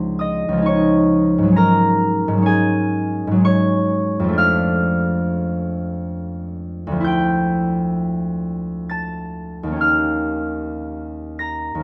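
A bright, ringing concert harp, thumb-plucked and up front in light reverb, plays a graceful, dreamy classical solo at 66 BPM in a rubato 3/4 with uneven beats, spanning Db2 to Bb6 through rich chords from Dbmaj9 to Eb9 in this 11.8-second excerpt cut from a longer piece.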